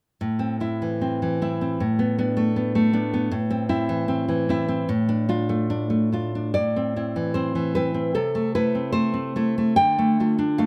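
A fingerpicked nylon-string guitar plays alone from 0.2 s, its full-bodied, deep classical tone sitting up front in this melancholic, intimate romantic piece in A minor, tuned to A4 = 444 Hz. The 2/4 pulse moves freely in rubato between 67 and 82 BPM, with harmony that moves from A minor through suspended and D minor colours. A second section begins at 6.6 s before the cut from the longer piece ends at 10.7 s, all captured by close, detailed microphones with light reverb.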